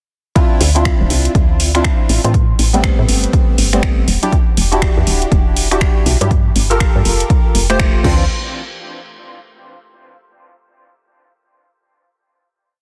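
This moody deep house piece in D minor opens at 0.4 s straight into the drop: hollow, percussive organ stabs in syncopated chords, a punchy, overdriven four-on-the-floor kick and a programmed kit of finger snaps, metallic closed and open hats and crash. At 121 BPM in 4/4 with a 16th-note swing, the groove feels loose and warm. A woody, round FM bass riff joins at 0.6 s, colored by tube saturation and sidechain pumping. The organ stabs move one chord shape in parallel through Dm9, Am9, Em9 and Gm9, back to Dm9, with ensemble chorus, sidechain pumping and dub echo. The kit carries its own overdrive and soft clipping on the snare, and the whole band hits an accent at 7.8 s before a final hit from 8.3 s. It all sits in a digital ambience with a dense, heavily limited modern master.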